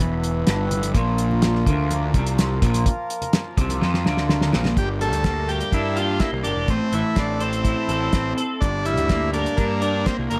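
A straight 4/4 groove drives this trippy, hypnotic psychedelic rock passage, cut from a longer piece, with a cloth-damped drum kit up front: its thuddy hi-hat, tight kick and fat snare sound dry and dark under a rolled-off top. Picked electric bass with overdriven fuzz sits just as prominently, while a clean, twangy electric guitar riff, double-tracked and run through flanger, adds a bright, compressed edge. A reedy, nasal hand-pumped harmonium breathes sustained chords underneath, and very quiet congas with a thin skin and soft hands add close percussion from 0.7 to 4.8 seconds. After a drum fill, the second section opens at 4.8 seconds as a vintage, buzzy combo organ enters with the melody, its slapback echo ringing over chords that move from Gm to Am and back. Light reverb and a small room ambience surround the mix.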